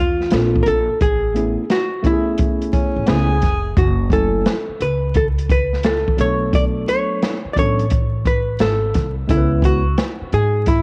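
Jazz-hop with a nocturnal, mellow swing, this short clip pairs a dark, clean hollow-body archtop guitar carrying the melody up front with a woody, growly pizzicato upright bass and a boomy-kicked acoustic jazz kit of hi-hat and snare, the drums roughened by vintage 12-bit sampler grit. A worn, slightly out-of-tune tine electric piano supplies jazzy ninth and seventh chords beneath, while a breathy tenor saxophone with light vibrato and scooped notes slips in a brief second line from 2.7 to 3.8 seconds. Cassette tape coloring, vinyl crackle and a small-room ambience give the whole piece a homemade, late-night feel.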